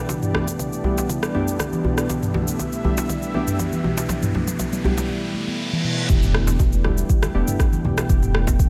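Afro house at 120 BPM in E minor pentatonic, warm and hypnotic, this excerpt holds on an Em7 chord as a smooth, warbling sawtooth pad and mellow, detuned analog key stabs pump under sidechain, while a ringing stainless-steel handpan plays meditative arpeggios through a filter sweep and delay. An up-front, overdriven electronic kick anchors an afro-pop kit of rim click, shaker and toms, with a tight, cracking djembe close and dry beside it, as a drum fill, riser and reverse cymbal build toward the drop at 6.1 seconds. There an impact lands, a round sine sub bass enters with tube saturation, and low-tuned, thick-skinned congas join very quietly at 6.5 seconds in a light digital ambience.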